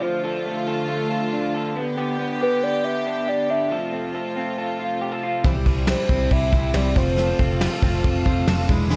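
Restless and bittersweet, this jangly indie pop fragment at 138 BPM opens with a hollow, woody clarinet-like synth lead carrying the melody through chorus, phaser and analog delay until 7.4 s, over floating sul tasto chords from a studio string section and arpeggios on a slightly broken-up, lo-fi electric guitar through a small old amp, before a full-bodied picked steel-string acoustic guitar, a round, foam-muted vintage electric bass and an up-front soft brush drum kit with gated reverb join at 5.4 s, in a lightly reverberant room as the chords move from Dm through G and F to C and back to F.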